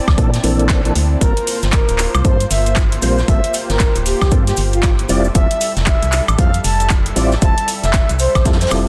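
An overdriven, up-front electronic kick anchors this moody deep house excerpt at 116 BPM in G dorian, joined by a dark, hollow organ-like FM bass and a softly warbling detuned analog pad that pump against it, metallic-hatted handclaps, hi-hat and woodblock from a gritty electronic kit, a faint brushed snare and hi-hat, lightly driven tonewheel organ stabs with key click and slow rotary swirl, and, from 1.2 seconds, a breathy flute-like lead with tremolo and 12-bit sampler grit over a grainy cabasa, all moving through Bbmaj9#11, Gm11 and Fmaj9 in a dry, dense, heavily limited mix.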